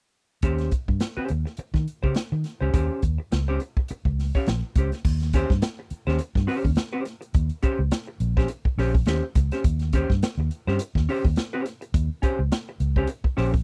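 Playful and funky, this excerpt cut from a longer piece grooves in Eb mixolydian at 104 BPM with a light 16th-note swing, opening on an Eb6 chord. A dark, clean hollow-body jazz guitar picks out accompaniment while a round, foam-muted fingered electric bass sits up front, and an airy, polished big-band drum kit with a punchy kick, medium-tuned snare, hi-hat and crash cymbal drives the groove from 0.4 to 13.6 seconds. The sound is a dry, close 1970s-style studio recording with little reverb, shifting into a new section at 5.0 seconds.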